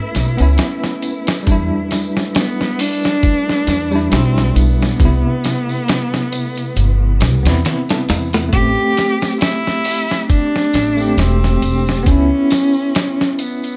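A swung 68 BPM trip hop groove in 4/4 opens this dark, hypnotic A minor excerpt, as a gritty 12-bit sampler-style drum kit with a thumpy kick and studio reverb sits up front beside a woody pizzicato upright bass and distant tambourine and triangle, while a bell-like tine electric piano with tremolo, tape echo and a filter sweep until 8.5 s supports an expressive bowed cello whose vibrato and portamento trail dub echo, and a faint, flickering granular texture drops out at 8.5 s as the chords move from C#m7 through Em7 and Cmaj7 to Am7.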